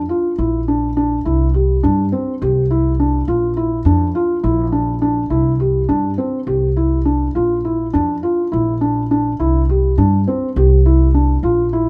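A dark, warm recording set in a moderate recital-hall reverb carries this playful, hopeful fragment of contemporary chamber music in an uneven 7/8. Up front, a felt-muted upright piano plays soft, mellow arpeggios with an intimate, thickly felted tone, while a pizzicato upright bass with steel strings adds a woody, growly low line from the start. The harmony sways between Bb and C throughout the roughly 11.9-second excerpt.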